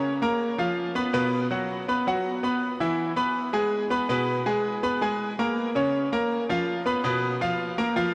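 Latin piano solo at 163 BPM in a straight 4/4, passionate and fiery, where a bright, brilliant baby grand with short sustain and analog delay sits up front across the full 8.1 seconds of this short cut from a longer piece, its chords moving from Db6 through B5, E and Abmadd9/Cb back to Db6 before falling away, all soaked in a huge, dreamy reverb.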